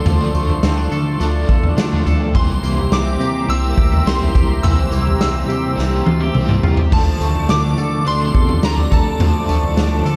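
Dream pop at 105 BPM in 4/4 with a straight feel, this excerpt from a longer piece floats in a dreamy haze over a Dm to C7 progression that returns to Dm at 6.9 seconds. A shimmering FM bell carries the melody high up with a full-bodied, bright tone, its long release spread by ensemble chorus and tape echo. Beneath it, an overdriven semi-hollow guitar sits in the background with tremolo and analog chorus, while a twangy, clean electric guitar plays compressed arpeggios through chorus and tape echo, and a swirling, detuned analog pad warbles through phaser and chorus. A glossy, retro synth bass with a fast pluck and pulse-width movement anchors the low end, and a very quiet vibraphone struck with hard mallets adds a metallic, ringing texture with slow motor vibrato until 9.3 seconds. The raw garage drum kit sits up front, punchy and gritty with a rolled-off top, covering kick, snare, toms, tambourine and crash, and it plays a fill from 5.8 seconds. 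Small room ambience and a dark, warm production tie the parts together.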